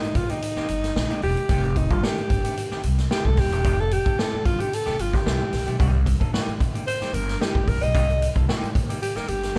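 Recorded live by a band in one room with light reverb, this short cut from a longer funk piece moves at 112 BPM in C dorian with a hypnotic, sly mood, circling through Cm7 and F9. A breathy, close-miked alto saxophone with jazz vibrato solos up front across the full 9.6 seconds, over a natural big-room drum kit of punchy kick, snare and hi-hat and a woody, thumpy pizzicato upright bass on gut strings. A clean, fingered semi-hollow electric guitar sits in the background, adding a warm hollow-body glow to the accompaniment.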